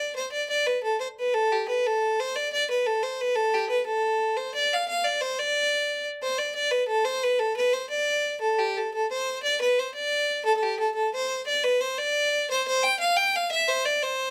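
In a small room with moderate ambience, a single bowed fiddle, clear and smooth with light vibrato, plays up front and alone through this wild, spirited Celtic folk fragment in D dorian, cut from a longer piece, moving at 118 BPM in 6/8 with a straight feel and tuned to A4 = 439 Hz, its even melody ranging from G4 to G5 and shifting into a new section at 8.4 seconds before breaking off at 14.3 seconds.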